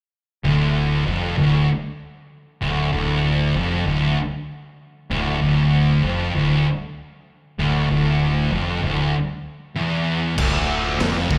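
Stoner and doom metal with a heavy, sludgy mood, heard as a live club gig with light room reverb, where two thick fuzz guitars, one warm with slapback echo and one dark and up front, grind a low riff over a growling overdriven fingered bass on a D minor chord until 10.4 seconds, when a third, bright double-tracked fuzz guitar joins in the background alongside a raw garage drum kit with a boomy kick, dark cymbals and a gritty, saturated, rolled-off top that pumps in the small room.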